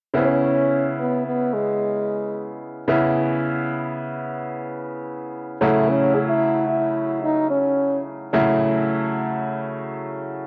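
Progressive instrumental in C# minor, intricate and driving, moving at 110 BPM in a straight 5/4. A bright concert grand piano with deep bass accompanies from 0.1 to 10.5 seconds, shifting from C#m7 to F#m7/C# at 5.6 seconds. A mellow, roomy French horn carries the classical-style solo melody from 0.2 until 8.0 seconds, its tone colored by cassette tape, while light reverb and studio ambience surround this home-recorded fragment of a longer piece.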